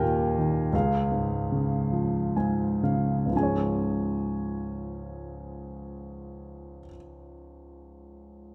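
Peaceful and tender, this short fragment of a lyrical classical piece is carried entirely by a solo grand piano in 6/8, played with a free, rubato feel. The piano sounds clear, natural and intimate, placed up front so that the noise of its action can be heard beneath the notes, which span from Db2 to Ab5. The opening passage slows as it unfolds, moving from an Eb chord to Db, and a brief piano fill from 1.9 to 3.3 seconds leads into a new section. That second section carries the music on to the end of the 8.5-second fragment. A moderate recital hall reverb gives the instrument a gentle sense of space around its close, unadorned tone.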